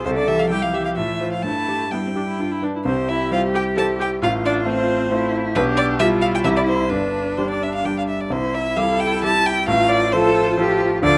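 Cheerful and spirited, this quick classical-period piano quartet excerpt in C major moves in a rubato 3/4 at 126-137 BPM, with an up-front, focused violin singing the melody over a distant cello's vibrato second line, a brilliant concert grand with deep bass and an expressive viola using portamento supplying accompaniment, all captured by close, detailed microphones in light reverb.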